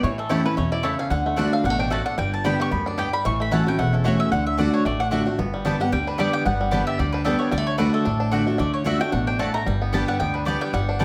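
Set in a moderately roomy large-studio ambience, this lively, virtuosic bluegrass excerpt swings along with a mellow double-string mandolin and a twangy, fingerpicked banjo carrying the melody, a bright, full-bodied steel-string guitar up front in accompaniment, a dark, thumpy gut-string upright bass plucked underneath, and a second woody mandolin adding stabs from 0.3 seconds.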